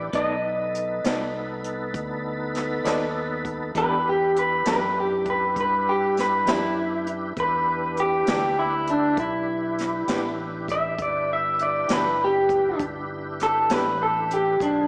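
Mournful and brooding, this slow blues in E minor moves at 66 BPM in a straight 12/8, cut from a longer piece. A tonewheel organ holds full, lightly overdriven chords through a slow rotary speaker with chorus vibrato, while a fingered electric bass gives a dark, round, amped low end. A jazz kit played with brushes keeps time on hi-hat, a medium-tuned snare and a boomy kick, with a natural small-room character. Two picked, twangy electric guitars through a small old amp share a slightly broken-up edge and slapback echo: one plays accompaniment with tremolo, and the other carries the melody, stepping out as a clean solo from 3.8 seconds as the harmony shifts from B7#9 to Em7. A wet concert-hall reverb surrounds the mix, which blends a big arena sound with a small-speaker quality.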